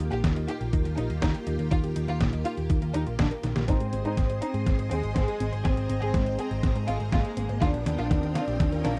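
A lush, bright string machine opens this short cut from a sunny, romantic italo disco track at 122 BPM, sustaining chords over a round, dark hollow-body bass played with a pick and set up front, while a punchy detuned sawtooth pluck traces arpeggios through tape echo in the background. Almost at once a bowed chamber violin section joins with the melody, intimate and close with light vibrato and a soft sul tasto touch, colored by a low-pass filter and its own tape echo. The beat comes from a thumpy electronic kick and a detuned 8-bit drum machine supplying hi-hat and a medium-tuned snare, both with a sampler-style character re-recorded in a small room. A drum fill at 3.4 seconds leads into a new section at 3.7 seconds, where the harmony shifts from Ebadd9 to Ab, the drums keep filling and a filter sweep moves across the violins. From 5.6 seconds a riser creeps in behind the band, and at 7.6 seconds the chords return to Ebadd9, all captured in a dry, close 1970s-style studio sound with little reverb.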